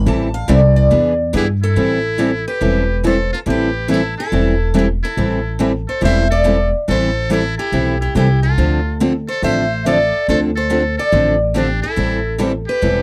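A fiery, swinging stretch of jazz manouche in A minor at 141 BPM opens with a bright, boxy archtop guitar carrying the melody over a woody, thumpy upright bass, while two picked steel-string guitars, one warm concert-style and one parlour-sized, fill in the accompaniment, and a steel-string guitar solo runs until 1.8 seconds. A buzzy, thin muted trumpet with vibrato joins at 1.4 seconds as a second line, and the chords move from Am7 and E7#9 to Dm7 before returning to Am7. The sound is dry and close, like a 1970s studio date, with the bass sitting up front.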